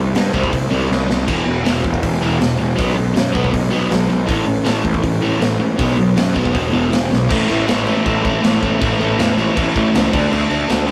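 A rough rehearsal-room recording with light reverb and warm saturation gives this rowdy, rebellious punk rock cut, taken from a longer piece, its rough edge. Up front, a crunchy, double-tracked overdriven guitar picks a riff over growly, punchy fuzz bass, while a gritty garage kit with a pumping stone-room sound drives crash, splash, hi-hat, medium-tuned snare and kick, adding fills at 0.9 and 7.1 seconds. The chords move from C5 through E5, B5 and A5, and a second section starts at 7.3 seconds and closes on D5.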